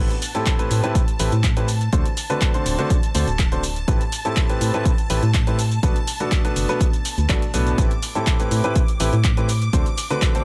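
Shimmering string-machine violins hold sustained chords with a soft attack over a clear, up-front grand piano riff with digital delay and a hollow, organ-like FM bass, all three pumping with sidechain, as a punchy analog drum machine of handclaps, hi-hat and shaker joins and a tape-warm electronic kick arrives at 0.5 seconds, driving this energetic yet bittersweet piano house excerpt in A dorian at 123 BPM through Am9, D7 and Bm7 in a dry, close sound.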